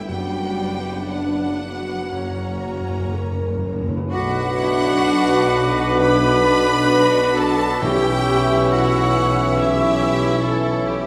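A wet stone room wraps this short orchestral passage, cut from a longer piece, in reverberation, lending it a yearning, elegiac weight as it moves slowly in 4/4 with a rubato feel. Bowed strings carry the opening: a rich, focused violin section sings the melody in the background while a lush, distant second violin section adds an expressive upper line, over smooth, even violas and rich cellos, with an expressive double bass section and a soft-attacked tuba anchoring the low end. A roomy French horn section holds sustained chords throughout, and timpani struck with hard mallets sound close and dry, articulating a fill between 2.1 and 4.1 seconds. At 4.1 seconds the woodwinds and brass thicken the texture: a clear oboe, a pure metal flute high above, a very quiet clarinet and a mellow bassoon add their lines, while a loose, clear trombone section joins the sustained chords. The harmony settles from B minor toward a half-diminished chord near the close, leaving the phrase suspended as the excerpt ends.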